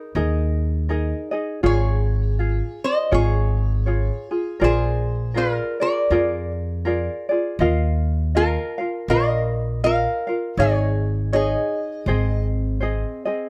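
Languid and dreamy, this short Hawaiian passage, cut from a longer piece, drifts along at an easy swung pace in 4/4. A metallic, nasal lap resonator guitar carries the melody with slide and fingerpicks, bathed in plate reverb, while a light, fingerpicked tenor ukulele supplies the accompaniment and a woody, thumpy pizzicato upright bass on steel strings holds down the low end. All three sit up front in a lightly reverberant space, with the guitar stopping at 12.5 seconds, the bass at 13.0 seconds and the ukulele playing on until 13.5 seconds as the harmony settles onto Ab.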